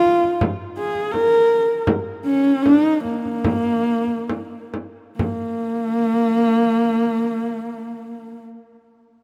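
A dark, husky horsehead fiddle opens this solemn, windswept fragment of Mongolian folk music, its single bowed voice sitting close and up front with expressive vibrato and portamento. A frame drum played with soft hands joins almost at once and stays near, the opening passage gradually slowing down before the drum falls away at 5.6 seconds. The fiddle carries on alone through a second passage until 8.4 seconds, surrounded by a huge ambient reverb.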